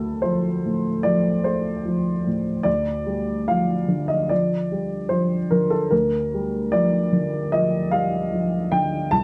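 A rubato pulse in 4/4 carries this brief, intimate and wistful neoclassical minimalist fragment, where a lone dark upright piano, mellow, woody and slightly detuned with a worn vintage character, sits up front in a small room's moderate reverb, moving from Dm7 to Gm7/D across a range from C2 to A5 over its 9.2 seconds.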